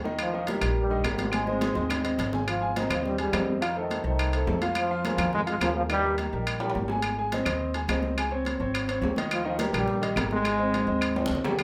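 A clear, slightly boxy grand piano and a dark, thumpy pizzicato upright bass open this sunny, joyful salsa excerpt, quickly joined by high-tuned congas with a thick-skinned, hard-handed sound set in the background, woody vintage claves and ringing metal-shelled timbales that add short fills. Up front, a tight, warm trombone section carries the melody, falling silent at 6.6 seconds and returning at 9.3 seconds. The band sounds as if playing live together in a small room with a wet reverb, and the excerpt is cut from a longer piece.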